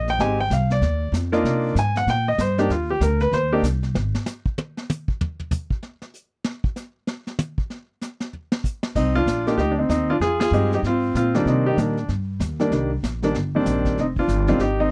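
A cool, swinging jazz piano trio excerpt in C minor at 192 BPM opens with a natural-sounding baby grand piano carrying the melody over a woody, growly pizzicato upright bass and brushed drums. After the piano drops out, a drum solo begins at 3.9 s on a vintage kit with dark cymbals, a medium-tuned snare and a tight kick, and the bass stops shortly after. The full trio returns at 9.0 s and hits a band accent at 10.4 s, with the short-sustained piano and the bass up front in a dry, close 1970s-style studio sound with light reverb.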